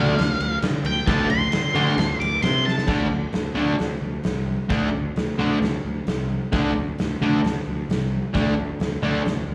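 A straight 132 BPM beat in 4/4 anchors this gritty, swaggering garage rock cut in D minor, heard live through a club PA, where a dark octave-fuzz lead guitar with slapback echo solos until 2.9 seconds over a bright, double-tracked fuzz guitar riff, a punchy overdriven picked bass and a raw, saturated drum kit with a punchy kick that throws in a fill at 2.7 seconds before the music settles onto a D5 power chord.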